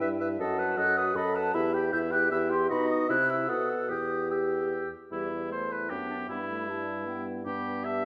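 A quick 3/4 at 154 BPM with a rubato feel drives this cheerful, spirited classical-period movement for wind quintet in E minor, a short passage cut from a longer piece. A hollow, airy silver concert flute carries the melody with vibrato and tongued notes, while a warm, distant oboe sings a second line, and a bright clarinet and a clear French horn with light vibrato fill in the accompaniment. A dark, up-front bassoon anchors the bass as all five play throughout, the harmony moving from B7/F# to Em and later to G, and the whole ensemble sits in a wet recital hall reverb.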